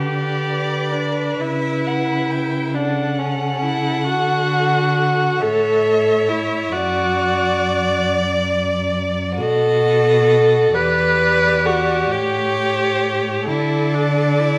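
Classical string quartet music in a slow, tender romantic vein, lilting in 6/8 with rubato and drawn from a longer piece. One violin sings the melody with rich vibrato and expressive portamento, while a second violin traces its own line from a distant position. The viola, the loudest part, lays down a smooth, even accompaniment up front beside the cello's expressive, warm-toned bass, all bathed in recital hall reverb as the harmony passes through B7 at 9.4 seconds and comes to rest on D at 13.5 seconds.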